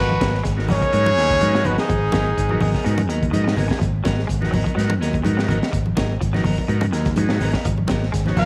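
Defiant and intense, this afrobeat excerpt moves at 125 BPM in 4/4 with a light sixteenth-note swing, sitting on a G#m9 chord in G# dorian. A mellow, up-front trumpet carries the melody with light vibrato, backed by a brilliant second trumpet with scooped notes and a raspy, distant baritone saxophone. The horns sound together only until 3.2 seconds and return for a brief hit at 8.4 seconds. Beneath them, a fingered electric bass sits forward in the mix, while a very quiet clean guitar plays arpeggios and a hollow-body electric guitar adds stabs in the background. A gritty breakbeat drum kit with a high-tuned snare and punchy kick joins congas with ringing hard hands. A reedy, heavy-vibrato combo organ enters at 0.6 seconds and plays a fill from 3.1 seconds, all set in a small room with light reverb.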